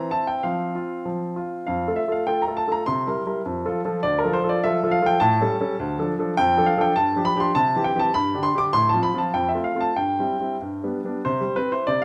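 A clear, intimate baby grand piano carries this cheerful, graceful classical-period sonatina alone in duple metre with a free, rubato feel, its audible action noise and long sustain sitting up front in a moderate recital-hall reverb as the harmony turns toward a new key at 6.4 seconds, in a brief cut from a longer piece.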